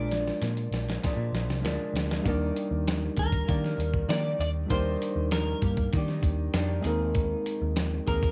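A gritty, sampler-style drum kit sits up front in this nostalgic, laid-back bedroom pop excerpt, its thumpy kick, fat snare and hi-hat compressed and carrying a cassette-tape grain, with a drum fill opening the clip from 0.1 seconds. Beside it, a dark, round, foam-muted picked electric bass holds the low end just as prominently. The melody comes from a clean, picked electric guitar with a dark tone, washed in lush chorus and the same tape character. A bright, fingerpicked nylon-string guitar with fresh strings adds small accompaniment through subtle chorus and vibrato. A worn, slightly out-of-tune tine electric piano sits alongside it with light overdrive. At a straight 98 BPM in 4/4 in Eb major, the harmony moves from Bb7 to Ebmaj7 at 2.3 seconds and settles on Abadd9/Eb at 6.8 seconds, all within a snug booth ambience that feels like a home cassette recording.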